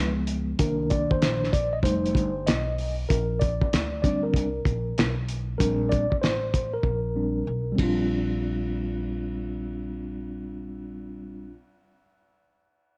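Jazz-hop excerpt with a relaxed, cool swing, where a mellow tine electric piano run through cassette tape takes an up-front solo from the start, backed by a woody, thumpy pizzicato upright bass on gut strings and a cloth-damped, muffled drum kit with a fat snare, dark cymbals and gritty saturation that enters at 0.3 seconds, plays a fill from 6.8 seconds and stops at 8.0 seconds, all set in a small home room with light reverb.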